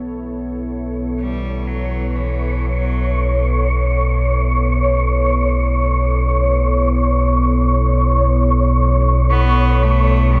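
Unsettling and cavernous, this dark ambient drone floats in free time. It opens as a deep, moody sawtooth pad fades in, joined at 0.2 seconds by an ominous, rumbling low drone with ring-modulated, nasal edges and lush chorus sitting up front. From 1.2 seconds a reedy, gut-string cello, bowed by one player and touched with delay, fades in, and a moment later an airy, wind-like high noise texture in its own ensemble chorus settles above it. The dreamy mix is soaked in a huge reverb with an 8.8-second tail.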